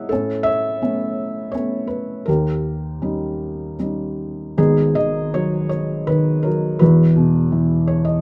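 Classical solo piano in a lyrical vein, this short excerpt has a wistful, reflective mood, moving at 80 BPM in 3/4 with uneven beats and a rubato feel in G# minor, tuned slightly low to A4 = 437 Hz. A felt-muted upright piano carries everything alone from 0.0 to 8.2 s, its tone soft, muted and mellow, placed up front and intimate in the sound. The part ranges from a deep E1 up to F#5, drawing on both the low register and the upper middle. Harmony moves through Aadd9 and D#7 before the phrase restarts at 4.6 s on G#m7, then settles onto Esus2, with the passage heard as two statements of the same section. A brief piano fill from 7.5 s closes the clip, which is cut from a longer piece and sits in light reverb.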